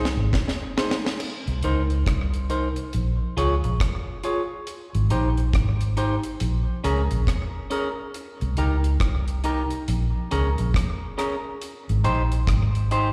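A drum fill on a dry, deep reggae kit with a high-tuned snare and tight kick opens this laid-back, hypnotic roots reggae excerpt at 69 BPM in Bb dorian, as a dark, round, foam-muted fingered bass and a clean, twangy picked electric guitar with tape and slapback echo play along from the start before settling at 1.2 seconds into a swung groove cycling through Cm7, Bbm7 and Abmaj7, all heard as a live gig through the venue's PA with recital hall reverb.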